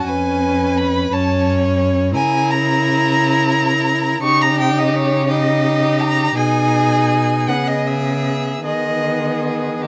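A dry, closely miked and detailed recording captures this elegiac, melancholic passage from a slow romantic movement for string quartet, flowing with rubato in 6/8. Up front, the first violin sings the melody with smooth, even vibrato, while the second violin adds a clear second line and the viola fills in a rich, focused accompaniment. The cello, warm and equally forward, carries the bass with soft attacks, expressive vibrato and portamento.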